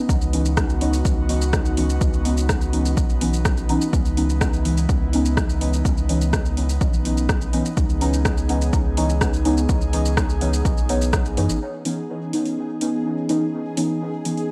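A deep, mellow chord stab, soft and dark with a wave-folded edge, carries this cavernous dub techno cut at 125 BPM in C# minor, its fast-attack, decaying hits smeared by chorus, phaser and dub echo over an opening C#m9 chord while pumping against the kick. A punchy, overdriven electronic kick and a deep house kit of metallic hats, rim click and shaker drive the groove in a straight 4/4. A round, soft sub bass and an airy, breathy pad sit beneath, and at 11.6 seconds the bass drops away as a bright, bubbling stepped-filter texture enters alongside a filter sweep on the pad, all in a dry, gritty recording with digital ambience.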